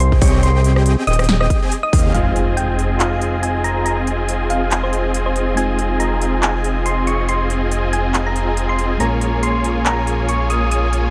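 Lush and emotional, this future bass cut at 140 BPM in F minor moves with a swung half-time feel, opening on a drop where an overdriven, punchy electronic kick drives until 2.0 seconds beneath huge, bright, detuned supersaw chords, a fat, thick sawtooth bass pumping with the sidechain, and a big-room dance kit of crisp hi-hat, handclaps, rim click and snare, while a round, tine-like thumb-piano-style synth pluck carries the melody through chorus and dub echo; from 2.1 seconds an electronic impact sounds in the background as a mellow, clean tine electric piano joins softly behind the other parts, over chords moving from Abmaj7 to Fm7 and then Bbm7.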